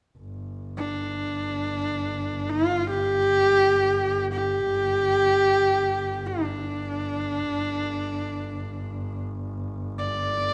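A single horsehead fiddle, bowed on horsehair strings with a husky, bright tone, sings a melody between D4 and D5 up front and close, rich with vibrato and portamento. Beneath it, a focused bowed double bass holds a low drone on G1 from 0.2 s, with the fiddle entering at 0.8 s. This free-time Mongolian traditional passage, cut from a longer piece, feels windswept and vast in the wet bloom of a recital hall.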